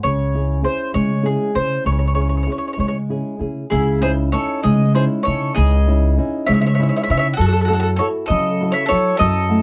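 In a small room with a dark, warm production, this romantic, wistful fragment of an Italian folk serenade drifts at a rubato 66 BPM in 6/8 in C# harmonic minor, with a bright, round, up-front picked mandolin carrying the melody over a thumb-plucked flamenco guitar and a woody pizzicato upright bass, while a softer, warm bowl-back mandolin adds a second line from 3.7 seconds as the harmony moves from C#m through C#madd9 to F#m7.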